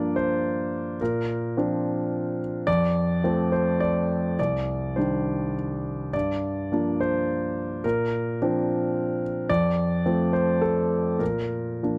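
Intimate and hopeful, this 12-second excerpt of neoclassical minimalist piano in 3/4 drifts with a rubato feel between 97 and 110 BPM in Bb major, as a solo concert grand, clear and up front with deep bass, long sustain and audible action noise, spans C2 to D5 through chords moving from Gm7 to Bbadd9, F and Cmadd9 before settling on Bb, all captured in a dry, close 1970s-style studio sound touched with light reverb.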